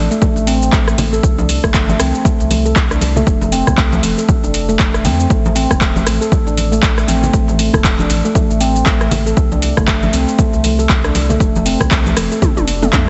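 A round, sine-toned sub bass with sidechain pumping opens this driving, earthy afro house excerpt, joined by a punchy, overdriven electronic kick and a bright handpan playing ringing, meditative arpeggios up front through digital delay and sidechain pumping. An overdriven deep house kit adds metallic hats, handclaps, rim clicks, shaker and toms, soft-handed congas sit close and dry in the background, and a drum fill arrives at 12.4 seconds. The chords move through C5, F and A5 in a lightly reverberant, heavily compressed radio-like sound whose top end stops at 8.0 kHz.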